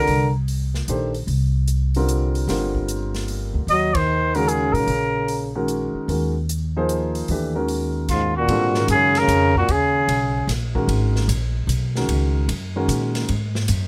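A nasal, breathy straight-muted trumpet carries the melody with light vibrato and scooped notes, alongside a clear trombone on a second line, in this intense, spiritual modal jazz excerpt at 150 BPM in swung 3/4. The horns sound in short phrases, returning at 3.7 s for a band accent at 3.9 s, before the music settles into G# dorian at 8.5 s. Underneath, a warm concert grand with audible action noise and a woody pizzicato upright bass play through nearly the whole excerpt, while an airy drum kit with a punchy kick, snare, hi-hat, ride and crash swings behind them, all captured closely and dry.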